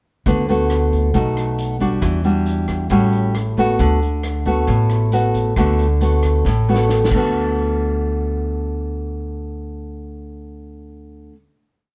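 Bossa nova with a breezy, romantic mood, this short, complete piece is played by a small band together in a moderate stone room. The nylon-string guitar sits up front, thumb-plucked in a classical manner, with thumb bass notes under syncopated plucked chords moving through D6, B7, Em9, A13 and back to D6. Beneath it, the upright bass is pizzicato on steel strings, woody and growly, playing a two-feel root-and-fifth line. The vintage drum kit keeps a soft bossa groove further back, with a punchy kick, medium-tuned snare, rim clicks, hi-hat and dark cymbals under a rolled-off top, all in a pumping small-room sound. A drum fill starting at 6.4 seconds leads into a final hit at 7.3 seconds, where the drums drop out and the guitar and bass ring on to close.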